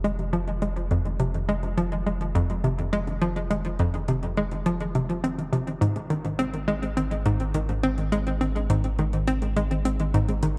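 Expansive and cosmic, this excerpt of sequencer-driven ambient space music puts a bouncy, detuned square-wave pluck riff up front over a deep sine sub bass, while a soft, warbling pluck traces arpeggios in the background with chorus and tape echo, and overdriven electronic hi-hat and bongos with metallic hats sit behind them as the arpeggio and drums fade in beneath a moderate plate reverb in a dark, warm mix across Fm7 and Ab chords.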